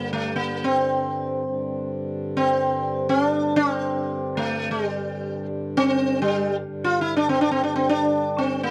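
A buzzing sitar and a reedy pedal harmonium sound together from the very start of this Hindustani classical excerpt, which unfolds in free time with a solemn, introspective mood. The sitar carries the melody up front, its plectrum-plucked tones shimmering with the ring of sympathetic strings. Beneath it, the harmonium holds a low, breathing drone, mellow and dry, sitting well below the sitar in level. Close, detailed microphones capture both instruments, with light reverb framing the warm, acoustic sitar. The brief passage runs 8.7 seconds, with a restatement of its opening material beginning at 6.7 seconds.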